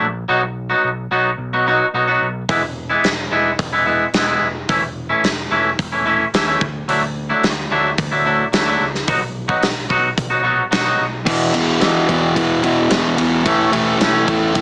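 A twangy, clean electric guitar plays bittersweet arpeggios over a growly, overdriven picked bass in this quiet-loud alternative rock excerpt, as a big-room acoustic drum kit, with a tight kick and rolled-off top, joins at 2.5 seconds and a bright fuzz guitar riff arrives at 11.3 seconds for a cathartic turn, the whole heard through a small-speaker sound with moderate studio ambience.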